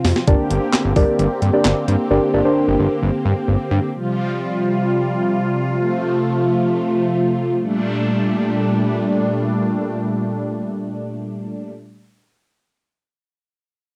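A drum fill on a clean, overdriven 12-bit drum machine with a thumpy kick opens this melancholic, cool synth-pop excerpt in G minor at 131 BPM, together with a fat, detuned sawtooth bass and a brassy, airy analog pad with chorus and vibrato, while muted, intimate felt-like synth keys join just after. The pad carries on alone after 3.8 seconds, sustaining chords from Gm through Csus4 and F to Gmadd9 at 7.6 seconds, inside a small, wet room with the lo-fi character of a home cassette recording.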